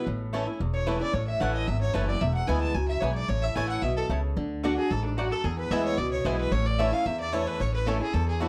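Bluegrass with a driving, lively feel, cut from a longer piece, where a clear, earthy bowed fiddle with light vibrato carries the melody up front while a metallic, nasal lap resonator guitar, played with slide and fingerpicks, traces a second line in the background. Underneath, a boxy, bright picked acoustic guitar supplies swing-style accompaniment and a woody, thumpy pizzicato upright bass sits up front, with a round, double-strung mandolin adding stabs from 0.3 seconds. The dark production carries light reverb, and the tune moves into a second section at 4.4 seconds.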